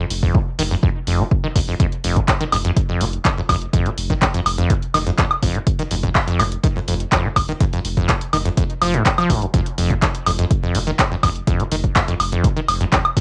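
Hypnotic and trippy, this acid house excerpt runs at 124 BPM in a straight 4/4, sitting in F minor for its 13.2 seconds. A squelchy, resonant sawtooth acid bass opens at 0.0 seconds, playing an up-front riff between F2 and F3 with a fast attack, a filter sweep and a decaying tail, coloured by subtle chorus, sidechain pumping and cassette tape grit. Beneath it, a deep, thick sine sub bass holds F1 from 0.1 seconds, sustained and tube-saturated, also pumping with the sidechain. A punchy analog drum machine supplies handclaps, hi-hat and woodblock, while a punchy electronic kick enters at 0.2 seconds, both tape-warm and placed up front. The whole piece carries the character of a home cassette recording in a moderate studio ambience with a short half-second decay.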